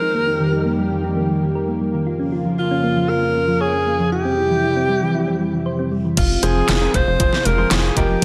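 A breathy, up-front alto saxophone with vibrato and digital delay sings a moody, nostalgic synthwave melody in F minor at 117 BPM, over a thick, warbling unison pad with chorus and sidechain pumping and a round, tine-like FM pluck whose background arpeggios carry a filter sweep until 6.2 seconds. At 6.2 seconds the groove arrives with a tight, saturated sawtooth sequencer bass, a knocking, overdriven electronic kick, and a pop kit with a deep snare, handclaps, hi-hat and crash under gated reverb. From 6.4 seconds a clear, intimate baby grand adds quiet stabs as the chords move from Eb/F through Bbm/F and C/F to Fm, all set in a lush hall reverb in this fragment of a longer piece.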